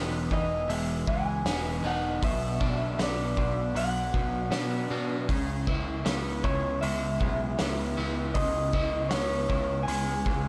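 Light reverb and a small-room ambience give this short rock clip, cut from a longer piece, a hazy, intimate sound in a dreamy, wistful shoegaze and dream pop vein. At 78 BPM in a straight 4/4, two overdriven semi-hollow guitars play the riff from the start. One sits up front, bathed in lush chorus, while the other stays in the background behind a reverse reverb. A growling picked electric bass adds bright, punchy overdrive underneath. From 0.3 s, a lead melody arrives on an electric guitar through a small old amp, slightly broken-up, lo-fi and compressed, trailed by analog delay. A loose indie drum kit enters at the same moment with a fat snare, tight kick and hi-hat, sounding warm and roomy with a rolled-off top, as the harmony moves from Emaj7 to Bm and then C#m7.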